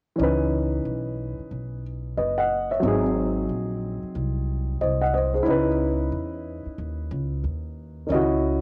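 A 62% 16th-note swing at 91 BPM in 4/4 sets up this smoky, cool jazz-hop fragment, cut from a longer piece, which moves from C#m9 to G#7 and back to C#m9. A dark, mellow grand piano with a vintage cassette-tape color, short sustain and audible action noise plays up-front accompaniment, while a woody pizzicato upright bass on steel strings holds the low end. Both play together from 0.2 to 8.6 seconds in an intimate small room with light reverb, a home recording on cassette.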